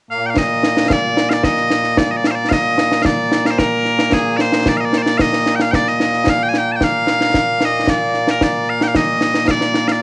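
Scottish pipe music in a ceremonial, stirring mood, moving at 112 BPM in a straight 4/4 in Bb major, cut from a longer piece. Loud, bright bagpipes carry the melody from 0.1 seconds, piercing and continuous, up front with a plate reverb and a cassette tape tone. From 0.4 seconds they are joined by concert snare drum and concert bass drum with dark cymbals, close and dry, all set in a small room on a home cassette recording with a dulled top end.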